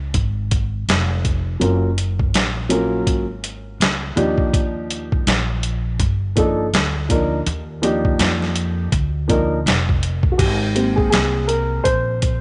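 A swung boom bap groove from a compressed, gritty sampler-style kit drives this smooth jazz-hop fragment, with a thumpy kick, medium-tuned snare, hi-hat and crash sitting up front and carrying the roomy sound of a large space. A pizzicato upright bass with steel strings opens the piece at 0.0 seconds with a woody low line, and a dark, mellow upright piano with a boxy, short-sustained tone enters at 1.6 seconds, moving through lush major ninth chords. The piano takes a solo at 10.4 seconds, all under light reverb and a soft, rolled-off top end.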